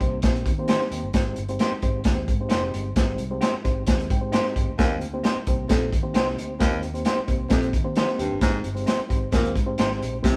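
Uptempo 1960s-style soul at 132 BPM, danceable and warm, built on a crunchy, saturated breakbeat drum kit that sits up front with a tight kick and rolled-off top, under a dark, round fingered electric bass and a mellow reed electric piano shimmering with fast tremolo. A semi-hollow electric guitar adds clean stabs bathed in spring reverb from 0.7 seconds, and the electric piano slips in a short fill at 3.9 seconds. At 4.8 seconds a clear baritone saxophone takes up a low riff with vibrato, soft attacks and scooped notes, as the harmony moves between Eb6 and Abmaj7 in a band-in-one-room sound with light reverb.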